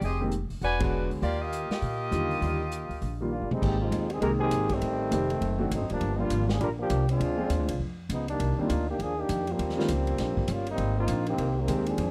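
This energetic big band swing cut opens at a brisk 201 BPM in Eb major, with a distant, roomy saxophone section carrying the melody over woody, thumpy pizzicato upright bass, a swinging drum kit with a boomy kick, and natural-sounding baby grand piano accompaniment. The saxophones drop out at 3.3 seconds as the drums play a fill, and from 3.6 seconds a mellow, vintage trombone section takes a solo with light vibrato over rich jazz harmony. The whole has the dry, close sound of a 1970s-style studio with a touch of small-room reverb.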